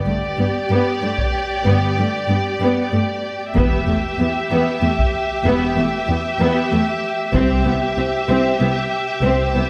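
Bowed strings open this short cut from a triumphant, heroic orchestral film score, moving at 63 BPM in a straight 6/8 in G major as a build-up over chords of G, E minor and C. A distant, lush violin section carries the melody between D5 and E5, while a second violin section with a soft attack and expressive vibrato holds a supporting line on G4. Beneath them, a warm viola section fills in the accompaniment, and a close, rich cello section joins a double bass section set in the background to anchor the low end. A taiko ensemble struck with hard sticks enters at 1.2 seconds and drives the heroic momentum in its live room until 8.6 seconds. A wet scoring-stage reverb with a 1.5-second decay surrounds the whole orchestra, giving it a grand, spacious sound.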